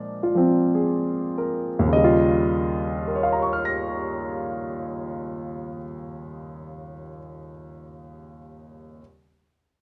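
A natural, up-front grand piano tone sits in light reverb, giving this brief solo jazz fragment an intimate, close feel. The piano plays alone throughout its 9 seconds, ranging from Eb2 up to Bb6, in Eb mixolydian at a slow 52 BPM in 4/4. The feel is swinging and playful yet loose and rubato, with swung eighth notes and time that stretches freely. In the opening moments the pace slows over a Bb7 chord, and a new passage then settles onto Eb9 from 1.9 seconds. Cut from a longer piece, it captures a playful, warm moment of unaccompanied piano.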